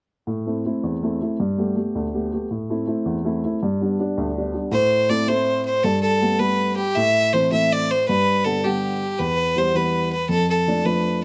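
The recording has a dark, warm production with a touch of reverb, cut from a longer piece of Celtic folk in a steady 6/8. A mellow, woody upright piano opens alone at 0.3 seconds, sitting up front with a natural tone as it carries the accompaniment through chords moving between A minor and G. At 4.7 seconds a single bowed fiddle enters with the melody, its clear, earthy voice placed close and forward, colored by a light vibrato. The harmony then reaches toward E minor and a D minor chord over F, giving the second passage a more shadowed pull. The mood is dark, lively and wild.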